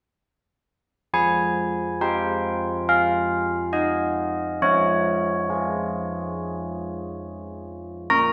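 Classical church-bell music in F minor at a slow 69 BPM, this solemn, wintry fragment of a longer piece features a solo carillon playing alone from 1.1 to 8.3 seconds, its dark bronze tones with a minor-third overtone and iron-clapper ring sitting up front in a reverberant recital hall as the harmony moves from F minor to D-flat over F at 4.6 seconds.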